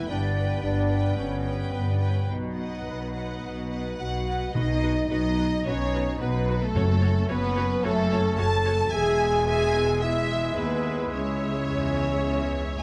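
In a straight, steady four-four pulse, this heroic, adventurous cinematic cue sets a symphonic violin section on the melody, with a second violin section and an airy flute section carrying a second line in the background over lush, bowed violas. French horns, the most prominent part, and a clear trombone section hold sustained chords, while distant cellos and double basses anchor the bass, and very quiet, hard-mallet timpani enter at 4.5 s and drop out at 7.5 s. Moderate scoring-stage reverb surrounds the excerpt as the harmony moves from G through B, F#m and E to C#m.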